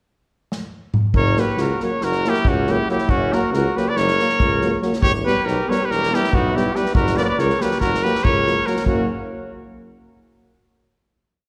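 This short, fiery Balkan brass band piece in 9/8 runs at 280 beats per minute in eighths, with a straight feel and tuning slightly below standard pitch. It opens with a drum fill on the acoustic kit at 0.5 seconds, a dark, smooth sound with a punchy kick, medium-tuned snare and toms played with bundle sticks. The tuba enters at 1.1 seconds on root and fifth bass on the main beats, distant and roomy, as the band moves through F#, Em and back to F#. Up front, the clear trumpet carries a motif-based melody of hook phrases with light vibrato and a soft attack, while a second, mellower trumpet follows mostly in thirds beneath it. In the background, the trombone and euphonium share the group's offbeat chords with a vintage, band-limited colour, the euphonium with fuller vibrato. The whole is set in a wet concert hall reverb, and the piece ends on a final chord from 8.9 seconds.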